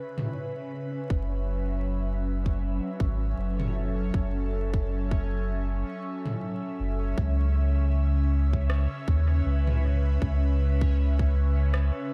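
A breathy, airy pad opens this meditative ambient dub fragment in F# minor, its detuned sawtooth and triangle tones softened by a noise layer and colored with chorus and phaser, while a bubbling, resonant texture of random filter steps drifts beside it in chorus and its own reverb, all over a steady bed of vinyl crackle. At 0.2 seconds a produced electronic drum kit of rim clicks and toms begins, sounding as if re-recorded in a large room, and at 1.1 seconds a deep, round sine sub bass arrives up front together with a tight electronic kick that carries the same large-room character. The groove sits at 79 BPM in 4/4 with a light swing on the sixteenths, giving the hazy atmosphere an unhurried, rolling pulse. The harmony rests on C#m7, moves to F#m7 as the bass enters, and returns to C#m7 at 7.2 seconds, the pad sustaining each chord with slow attacks and long releases. Cut from a longer piece, it feels like a suspended, dreamy moment.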